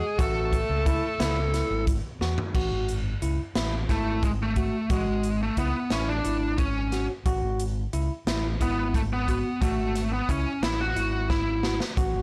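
A dark, distorted lead guitar carries the melody of this intricate, bright progressive instrumental in 7/8, joined briefly by a breathy alto saxophone with scooped notes that drops out at 1.8 seconds, bell-like tine electric piano arpeggios under a subtle chorus, a punchy overdriven fingered bass and an airy swinging big-band drum kit that plays fills at 2.2 and 11.3 seconds, heard through a blown-out, overdriven recording with light reverb.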